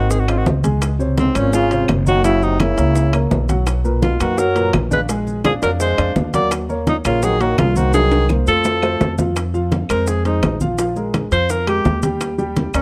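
A bright, scooping alto saxophone with vibrato leads up front over a punchy trombone second line, a natural baby grand piano and a woody, thumpy pizzicato upright bass as this fiery, driving Afro-Cuban jazz excerpt at 169 BPM in Bb minor opens, while low-tuned congas, very quiet round bongos, grainy maracas, background claves and ringing metal-shell timbales fill in the percussion, a drum fill arrives at 7.9 seconds, the trombone drops out at 9.1 seconds, and the saxophone takes a solo from 9.4 seconds as the key moves to F minor in a dry, close 1970s-style studio sound.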